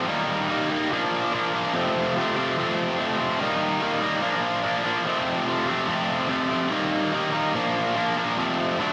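Rock with a sunny, confident mood and a straight 4/4 feel: a bright, overdriven electric guitar plays alone throughout this short cut from a longer piece, picked and double-tracked up front with slapback echo and analog delay, cycling through Eb, Bb and F chords inside a lush hall reverb that gives it a big arena sound.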